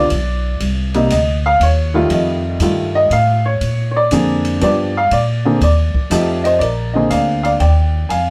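Jazz piano trio in a warm, swinging 3/4 at 120 BPM, where an up-front upright piano with a woody, short-sustained tone carries a solo melody through the first 6.6 seconds over Cm, F9, Bb9 and G7 changes, while a pizzicato steel-string upright bass sits close and an open acoustic kit with dark ride and hi-hat cymbals and a boomy kick plays quieter, the whole trio heard from further back in a wet studio reverb, in an excerpt cut from a longer piece.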